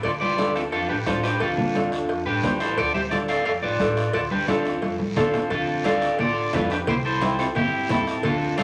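A brisk, straight 4/4 cumbia groove at 176 BPM drives this passionate, danceable latin piece in D dorian, built from bright, damped congas, a soft-beater bombo, ringing cowbell and timbales, a raspy guiro and a woody pizzicato upright bass. Up front, a twangy, slightly broken-up electric guitar carries the melody through spring reverb, while a distant, growling clarinet with subtone and scooped notes plays a second line and a fingerpicked flamenco guitar joins at 0.4 s. A drum fill at 4.8 s leads into a new section, and the harmony moves from Dm to C at 6.9 s, all set in a large studio reverb.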